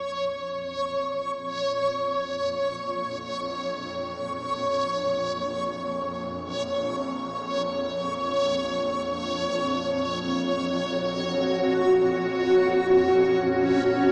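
A full-bodied, blurred granular cloud pad arrives up front at 11.4 seconds, holding sustained chords as the harmony shifts from Bb minor to Gb sus2 near the end of this desolate, unsettling dark ambient drone in free time. Throughout, a reversed, bright, dreamy texture hovers on a high Db and fades out across the whole passage, while a tense, detuned, swarming low drone fades in from the start. The sound sits in a huge, wet reverb with a cassette-tape, small-speaker grain, and the fragment is cut from a longer piece.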